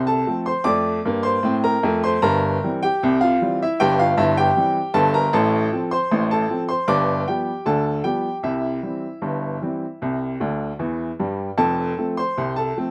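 Playful and lively, this short ragtime piece for solo upright piano moves at 77 BPM in a straight 2/4, set in F major and tuned slightly low at A4 = 439 Hz. The woody, clear piano sits up front in a dry outdoor sound, ranging from deep bass to bright treble as the harmony travels from F through C7/G, F/A, G7 and C. A brief piano fill at 10.4 seconds leads back home to F at 11.6 seconds, just before this fragment of a longer performance cuts off.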